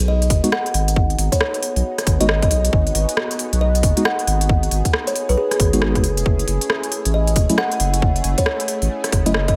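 A detuned sawtooth pad with chorus and sidechain pumping opens this late-night, soulful two-step garage excerpt at 136 BPM, alongside a thick, saturated sine sub bass that also pumps up front and a crisp, tape-warm garage kit of hi-hats and rim clicks swung on the 16ths; within the first half second a woody, ringing kalimba melody with delay, a tight layered electronic kick and mellow tine electric piano stabs join, all in a dry mix in G# phrygian that moves from G#m7 to F#m7 at 6.0 seconds.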